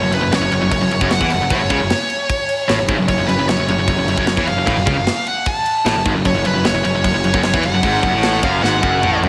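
A straight four-four pulse carries this heavy, epic metal fragment, where a smooth, up-front overdriven lead guitar with slapback echo sings its melody over a high-gain rhythm guitar with distortion and slapback echo, a second overdriven guitar tucked in the background, a growly fuzz picked bass, and a tight metal drum kit with bright cymbals, tight kick and toms, which closes with a fill at 8.6 seconds, all set in a big arena sound with moderate scoring stage reverb.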